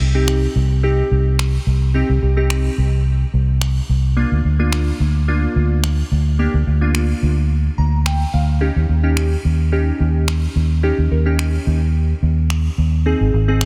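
Lightly reverberant, this confident, energetic dance-pop excerpt in C minor at 108 BPM rides a dark, round, punchy, foam-muted vintage electric bass up front, with glassy digital keys shimmering through chorus and a filter sweep and adding a fill at 7.5 seconds, tape-warm electronic finger snaps set softly behind, and chords moving from Cm through Bb and Eb7 to Ab.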